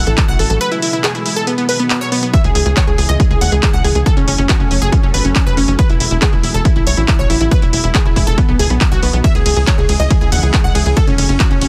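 A straight 4/4 pulse at 139 BPM drives this soaring, euphoric uplifting trance excerpt in E major, built on a punchy analog drum machine that enters at 0.1 seconds with handclaps, hi-hat and ride cymbal in a small-room character, its hats and cymbals pumping to the sidechain, joined at 0.2 seconds by an overdriven, layered electronic kick that sits up front. Beneath it, a tight, nasal sequencer bass in sawtooth and square-wave tones drives forward with fast-attack, decaying filter plucks and an evolving edge. The melody comes from a bright, detuned unison pluck with a noise layer, set in dub echo, while a catchy plucky unison lead carries a second line further back, its sustained sawtooth notes shaped by a filter sweep. A thick, chorused unison pad holds sustained chords in the background with slow attack and long release, moving through A6, E, B, C#m and F#m. The bass, pad and both leads all pump to the sidechain, and the mix is dry, dense and heavily limited in a modern style.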